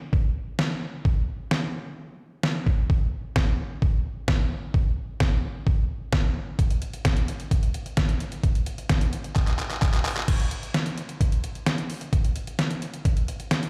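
Pop drum excerpt with a nocturnal, driving mood, carried entirely by a detuned 8-bit digital drum machine in a straight 4/4 groove: thumpy kick, medium-tuned snare, hi-hat, handclaps and crash cymbal, all overdriven and sitting up front. The machine has an electronic, sampler-style grit, and its sound is replayed through a big system in a bare stone room, with a moderate plate reverb adding a tail of about 1.8 seconds. The pattern shifts through three passages, with a drum fill from 9.4 to 10.3 seconds leading into the final stretch before the cut at 13.7 seconds.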